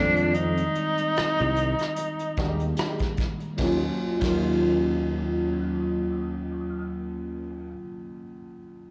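R&B with a neo-soul lean sets a smooth, late-night mood in this short excerpt, opening on a tenor saxophone with vibrato and scooped notes that stands up front before it drops out at 2.8 seconds, over a worn, slightly out-of-tune tine electric piano with phaser and a growly fretless bass thickened by tube saturation and analog chorus. A vintage brush kit with dark cymbals, a tight kick and soft clipping on the snare plays from 0.2 to 4.4 seconds, while a bright, twangy clean guitar with spring reverb sits in the background from 2.0 seconds as the harmony moves from Fm9 to Ebm9 at 3.6 seconds. The small-room recording is blown-out and overdriven throughout.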